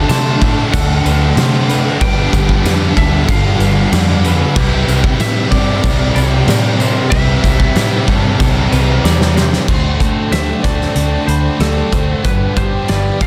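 Dreamy and blissful, this short excerpt of shoegaze and dream pop rock moves at 94 BPM in a straight 4/4, centred on D mixolydian with chords drifting from D7 to G7 to Cmaj7 before returning to D7 and G7. A lightly driven lead guitar carries the melody with a slightly broken-up, compressed tone and analog delay, while a lo-fi electric guitar through a small old amp plays fingered arpeggios in the background, coloured by subtle chorus and delay. Beneath them stack several picked riff guitars: a thick, dark fuzz guitar with lush chorus, a biting overdriven guitar trailed by reverse reverb, and a bright, double-tracked distorted guitar that stops at 9.7 s. A very quiet string machine adds shimmering, slow-attack violin chords, and a vintage foam-muted bass sits round and dark underneath. The loose indie drum kit is punchy and up front yet roomy, with dark cymbals and a drum fill from 9.0 to 9.7 s leading into the next section, while a jingly, close tambourine plays in the background until 9.5 s, all within a dense, heavily limited master.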